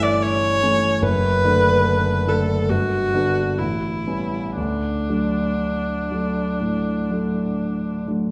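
Romantic classical chamber music in a tender, lyrical mood, this short excerpt from a longer piece sets a warm, bowed viola up front, singing the melody with vibrato and an even, smooth tone, over a dark, mellow grand piano accompaniment with deep bass and audible action noise, the two moving with rubato through a chord progression that arrives on D at 4.6 s inside the wet reverb of a recital hall.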